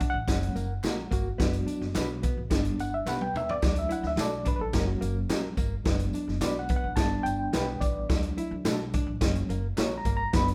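A reedy, lightly overdriven electric piano with fast tremolo takes the lead from the start of this joyful, uplifting 1960s-style soul excerpt, backed by a dark, compressed hollow-body guitar riff, a growly, woody upright bass and an up-front big-band drum kit with a boomy kick and a drum fill at 3.1 seconds. Tambourine and group handclaps join in the background at 0.3 seconds, and a clean, mellow electric guitar adds stabs from 0.8 seconds. The band sounds like it is playing live together in one room with light reverb, as the chords cycle through F#, Bm/F#, G and D.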